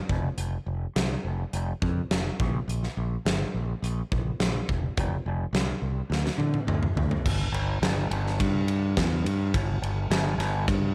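A growling fingered electric bass anchors this swaggering classic rock passage, its bright, overdriven tone sitting up front as it ranges from E1 to D3. Alongside it, a huge arena drum kit drives a straight 4/4 pulse at 105 BPM, with a fat snare, punchy kick, hi-hat, ride and crash cymbals, and toms all captured in a big room. The drums also sit up front, giving the pair a direct, muscular presence over a light reverb. A drum fill from 6.1 to 7.3 seconds leads into a new section that carries the driving momentum on to the end. The passage is cut from a longer piece.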